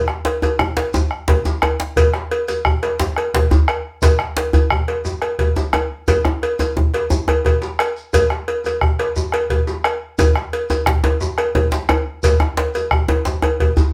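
A hard-handed djembe sits up front in this festive, driving West African drum ensemble, its medium-tuned strokes close and dry. The passage is cut from a longer performance and moves at 117 BPM in dotted quarters, a 12/8 metre with a straight feel. A second medium-tuned djembe carries metal rattles and has a vintage, band-limited character. Beside them, a round bombo and a metallic cowbell are also placed close and up front, while a grainy, mellow shekere sits lower and further back in a live-room sound. The five parts enter within the opening half second, the bombo at 0.1 s and the shekere at 0.4 s, and keep going together through the single section until about 13.9 s. The ensemble plays live in one room, set in a short, wet studio reverb of about 0.5 s.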